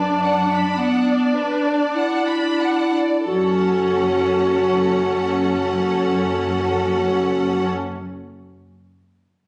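Classical orchestral music in a slow, romantic vein, this short passage cut from a longer movement feels solemn and yearning, moving in a flexible, rubato three-beat pulse that slows through its first 3.3 seconds. A violin section carries the melody with a close, expressive vibrato, while a second violin section traces a companion line alongside it. A dark, distant clarinet plays a second line beneath them and sits most prominently in the balance, its roomy, classical tone set apart from the strings. The viola section fills in a rich, vibrato-laden bowed accompaniment, and the bass is held by a focused cello section, joined by a smooth-topped double bass section quietly reinforcing the low end. The harmony shifts from Bm/F# to F#m as the opening section gives way to the next at 3.3 seconds, and the whole is heard through a wet recital-hall reverb with a slightly compressed, phone-in-the-room character.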